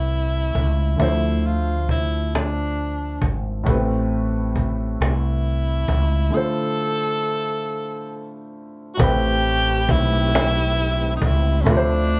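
A bright tenor saxophone carries the melody from the first moment, its jazz-style solo line marked by vibrato and scooped notes, over a present grand piano and a dark, round fretless electric bass sitting up front. This is a slow, sultry R&B piece in six-eight at 45 BPM in A minor, with a late-night mood built on Am9 and Dm9 chords. A woody cajon joins at 0.6 seconds, acoustic and up front with faint snares, giving a straight feel in a small-room sound. A break arrives at 6.3 seconds, and at 9.0 seconds a lush bowed string section enters in the background, its soft attack, portamento and expressive vibrato lending rich sustained chords behind the saxophone. The band sounds as if playing live together in one room with moderate studio reverb, and the passage is cut from a longer piece.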